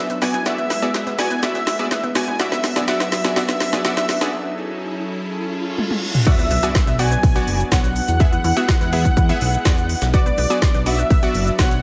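Emotional and driving, this 124 BPM progressive house passage in B dorian sets a bold, detuned unison lead on the melody against an airy, dreamy second lead in the background, over a lush chorused pad, a round, nasal analog pluck arpeggio, a fat sidechain-pumped analog bass, punchy supersaw stabs, a deep house kit with a woody snare and smooth hats, and a gritty, very quiet breakbeat sampler kit, as a very quiet riser, reverse cymbal and impact build from 4.2 s into the drop at 6.3 s, where an up-front electronic kick enters, the whole set in a moderate recital hall reverb.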